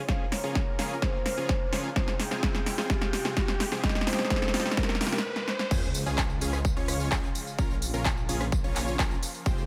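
Anthemic and powerful, this festival progressive house excerpt opens on a build-up where a metallic, ringing vibraphone melody with dub echo floats over a lush, warbling pad with chorus and a huge, airy supersaw riff through a low-pass filter, both pumping to the sidechain, while a very quiet riser and sub drop sit beneath. A punchy electronic kick and a big-room drum kit with crisp hats, handclaps and tambourine, both overdriven and up front, roll through fills up to a short break at 5.2 seconds. At 5.7 seconds the drop lands as the vibraphone stops and a menacing, beating detuned saw bass enters, pumping under chords that move from Db to Bbm.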